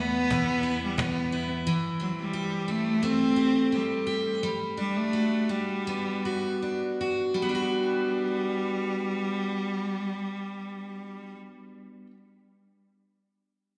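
Acoustic pop in G major, carefree and heartfelt, moving in 4/4 at 75-89 BPM with a light swing on the sixteenths, and slowing down between 1.6 and 7.4 seconds. A rich, bowed cello carries the melody from the start, one player heard close and up front with smooth, even tone and vibrato in a low-middle range. Beneath it, a picked steel-string dreadnought guitar supplies the accompaniment, sitting up front with a warm, acoustic sound that spans from its lowest bass notes into the middle register and continues to 12.2 seconds, just after the cello stops at 11.4. A woody cajon with faint snares and a vintage, band-limited character appears only briefly near the opening, from 0.3 to 1.2 seconds. The harmony passes from E5 to C6/E and on to Gmaj7, and the whole performance comes across as a live gig heard through a venue's PA, bathed in a lush recital-hall reverb, cut from a longer piece.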